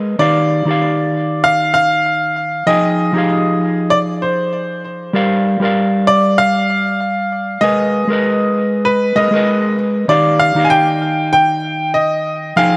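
A mellow, clean electric guitar opens at 0.0 s with a dark, fingered accompaniment through a digital delay, and a brilliant baby grand piano enters at 0.2 s carrying the melody, its intimate tone bringing audible action noise and long sustain through its own delay. This sunny chillout passage in Eb major moves at 97 BPM in 4/4 with a light swing on the sixteenths, cycling through Ebmaj9, Fm9, Gm7 and Abmadd9 before returning to Ebmaj9. Both instruments sit up front within a lush hall reverb, and the clip, cut from a longer piece, runs to 12.8 s.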